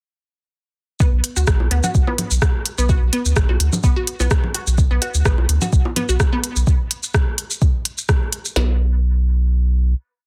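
A dense, heavily limited modern master with very little reverb gives this short minimal techno piece a dry, clinical closeness, with a quirky edge, at 127 BPM in 4/4 with a light 16th-note swing in B minor. From 1.0 seconds the drop arrives at once: an up-front click drum kit lays down a soft four-on-the-floor kick and a tiny snare, tape-warm and re-recorded in a large room, while a garage kit adds crisp programmed hats, rim clicks and shaker on a backbeat, its snare touched by soft clipping. A round, deep analog bass in the low register rolls through a staccato groove with a fast attack and a sidechain pump. Above it, a juicy, squelchy blip pluck with ring modulation and a resonant filter runs a repeating 9-step loop that drifts against the bar, coloured by phaser, subtle chorus, sidechain pumping and dub echo. Low bongos and congas from a small room scatter clicks and blips in cross rhythm from 1.6 to 6.1 seconds, and after the drums and pluck stop, the bass carries a final note to the close at 9.9 seconds.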